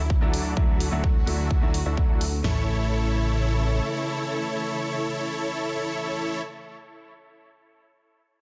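Dense and heavily limited with light reverb, this euphoric, anthemic festival progressive house fragment at 128 BPM in A major puts a thick, detuned supersaw riff up front, with sidechain pumping, a low-pass filter and dub echo, over a fat analog bass that stops at 3.8 s and a big-room drum kit of punchy kick, huge snare and toms with an electronic hi-hat, both gone by 2.6 s, while a clear, worn grand piano with dub echo and lush, woody bowed strings pump in the background across a Dadd9 to A change.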